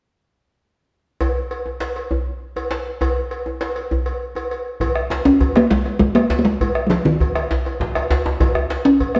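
A 12/8 pulse drives this powerful, festive West African drum ensemble, cut from a longer piece, as a metallic cowbell and a medium-tuned djembe played with soft hands open the groove at 1.2 seconds. From 4.8 seconds a deep, dark bombo joins, followed by a second, tight and cracking djembe. Then a talking drum with a short ring sits close and dry up front, carrying the melody between Eb3 and Db4, while the whole band plays live together in a reverberant stone room.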